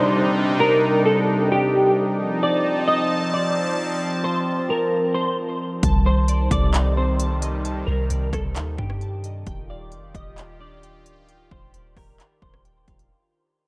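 This melancholic, spacious slice of atmospheric cloud-rap opens with a dark, clean semi-hollow electric guitar melody, thickened by ensemble chorus, filtering and tape echo. It floats over a bright, detuned sawtooth pad with sidechain pumping, while a very quiet downlifter sinks away within the first 2.2 seconds. At 5.8 seconds a half-time groove arrives: an overdriven techno kit with a heavy kick, smooth hats, handclaps and rim clicks joins a deep, round 808-style bass and glassy digital key arpeggios in the background, all within a dreamy mix soaked in cathedral reverb that fades out across its whole length.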